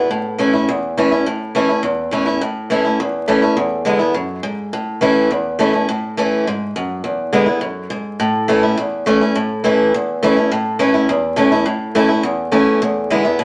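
A straight, rowdy 4/4 at 208 BPM drives this retro rock fragment in A major, tuned to A4 = 438 Hz, where a boxy, up-front picked old ladder-braced acoustic guitar plays alone for the full 13.4 seconds, moving between A and E7 before a new section arrives at 9.4 seconds, all set in a moderate studio reverb with a dusting of vinyl crackle.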